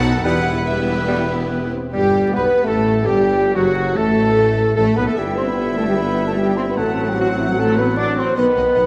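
Urgent and dramatic, this fast romantic orchestral movement in E minor runs at 149 BPM in 4/4 with a rubato feel, cut from a longer piece. The violin section carries the melody in the background, lush and smooth with vibrato, while a second violin line, a bright oboe, a hollow flute and a distant, roomy clarinet weave secondary lines around it. The mellow French horn section holds sustained chords and sits most forward in the balance, with the viola section and a bassoon filling in the accompaniment. Underneath, a mellow tuba, a rich cello section and an expressive double bass section anchor the bass, and a very quiet, close-miked trumpet section adds stabs on B4 only until 1.7 seconds. The harmony moves from Em through Gadd9, F#madd11 and F#dim/A before landing on B, all set in a wet concert hall reverb with a layer of vinyl crackle.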